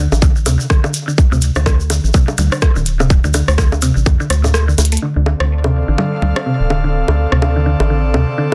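A woody, round mallet-like synth pluck riff and a rubbery, bouncy square bass open this hypnotic, quirky excerpt of swung minimal techno, both pumping against a tight, overdriven electronic kick that sits up front with clicky, overdriven hi-hats and rim clicks, overdriven layered electronic bongos and congas with tape echo, and a grainy acoustic tube shaker. After a drum fill at 4.8 seconds, an airy, breathy pad with chorus fades in slowly at 5.0 seconds over a Dm7 chord while a filter sweep moves across the chorused, delayed pluck. The dense, heavily limited mix sits in a small, moderately reverberant room.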